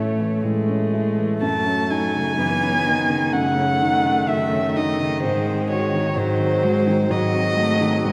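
A concert hall's reverb wraps this brief, yearning and elegiac cut from a slow romantic movement for piano quartet, played at 63 BPM in 4/4 with a free, rubato feel. Up front, a single dark, woody violin carries the melody with vibrato, over a mellow, vintage baby grand piano whose long sustain underpins the harmony. Close by, a smooth, even cello sings a second line and a rich viola adds accompaniment with soft attacks and expressive portamento, as the chords move from A to D#m7b5/F# and reach G#7 at 5.2 seconds.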